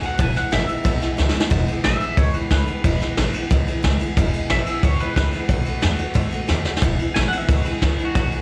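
A bright, twangy electric guitar carries the melody in this rowdy, rollicking rockabilly excerpt, opening with a clean solo over the first 1.5 seconds and dressed in phaser, plate reverb, slapback and tape echo. A jumbo steel-string acoustic guitar picks the accompaniment with audible finger squeak and its own plate reverb and slapback. A woody, thumpy pizzicato upright bass on gut strings and an up-front brush kit with a punchy kick, dark cymbals and a rolled-off top drive the straight 4/4 groove, with drum fills at 1.2 and 6.7 seconds, as the music moves from E to B7 and back, heard like a live club gig through the venue's PA.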